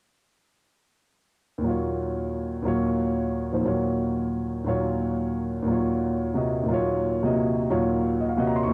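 A home cassette recording, set in a lush hall with moderate reverb, frames this brief fragment of a swinging jazz waltz in a cool, searching mood. A concert grand piano, its tone warm and natural with a deep bass and sitting up front through a cassette-tape colour, plays accompaniment from 1.6 to 8.7 seconds. It rests on a single Ebm9 chord across a range from the low bass to the upper treble.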